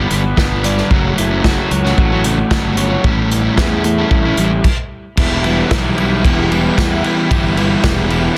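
A roomy, up-front acoustic drum kit played with bundle sticks drives this restless, bittersweet indie rock at 113 BPM in E dorian alongside two picked, overdriven electric guitar riffs (one crunchy and up front, the other bright with subtle chorus and tape echo) and a growly, punchy fuzz bass, before the band breaks off at 4.6 seconds and a very quiet, lush, detuned sawtooth pad enters at 5.2 seconds, all set in light reverb within a dense, heavily limited master.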